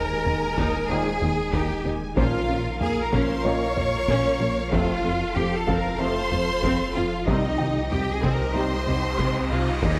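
Set in a moderate concert hall reverb, this vast, tense cut from a hybrid orchestral and electronic film score puts a lush cello section up front over very quiet bowed double basses, a deep, punchy sub bass and a gliding synth bass riff, while two violin sections with vibrato carry the melody and a second line in the background alongside a smooth viola section, a glassy FM pad, a round, warbling pluck playing arpeggios and a felt-muted upright piano, with heavy, close taiko drums entering at 0.3 s, quiet horn and trombone sections holding chords from 0.9 s, and an electronic riser arriving at 7.9 s.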